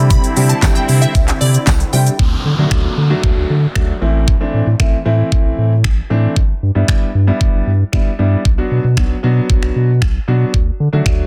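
Confident and energetic, this dance-pop excerpt at 115 BPM opens on a drop lasting until 2.2 seconds, where a glassy, crystalline wavetable pluck melody with chorus and digital delay rides over a mellow, detuned supersaw swell and a very quiet, jingly tambourine. Throughout, an intimate concert grand piano with audible action noise accompanies a deep, saturated sub bass and an up-front pop drum kit of knocking kick, fat soft-clipped snare, crisp hats, finger snaps, handclaps and shaker, with piano, bass and pluck all pumping from sidechain. An electronic downlifter sounds from 2.2 to 6.4 seconds as the chords move from D to Am, within a progression running from Cadd9 through Em7/G and Bm back to D, in a dry, dense, heavily limited modern master.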